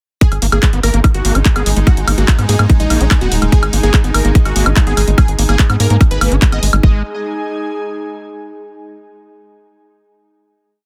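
A dense, heavily limited, close-sounding mix carries this alien, hypnotic psychedelic trance piece, where an up-front tight kick and a tape-warm techno kit of hats, claps and woodblock drive a punchy rolling sequencer bass, a squelchy screaming acid line with accents and slides, and a detuned supersaw stab riff through phaser and delay, while an evolving wavetable pad and an airy, breathy pad pump in the background before the groove gives way to a final chord at 6.8 seconds.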